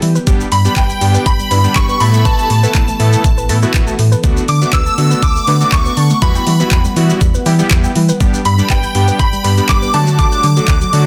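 A summery, euphoric dance-pop excerpt in D major at 121 BPM opens at once with a very quiet glassy FM pad, a soft, dark pluck tucked in the background with chorus and tape echo, a snappy slap-like FM bass with sidechain pumping, and an overdriven, up-front pop drum kit of knocking kick, handclaps, hi-hat and shaker. A grainy acoustic tube shaker slips in at 0.2 seconds, a fat, detuned sawtooth polysynth joins with pumping accompaniment at 0.3 seconds, and at 0.5 seconds a bright, shimmering FM bell takes the melody up front, haloed by ensemble chorus and tape echo. The chords move through G, Asus2, D6 and Emadd9 before returning to G and D, in a dry, dense and heavily limited modern mix.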